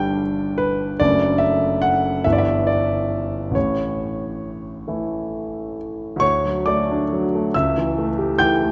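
A romantic classical character piece for solo piano, this brief excerpt unfolds in a warm, lyrical mood at a slow 44-50 BPM in 6/8, with a freely breathing rubato feel in D major. The grand piano is the only voice, spanning from F#1 up to G6, and it sits up front with a clear, intimate tone where the noise of the instrument's action can be heard. Its natural sound has a short sustain, so individual notes fade quickly even as a moderate scoring-stage reverb lends the space a gentle tail. The harmony moves from G through D/F# and Em7/G to A, then a new passage begins at 6.2 seconds on D before settling on A7/C# as the fragment is cut off at 8.7 seconds. The overall production leans dark and warm, giving the playing a close, private quality.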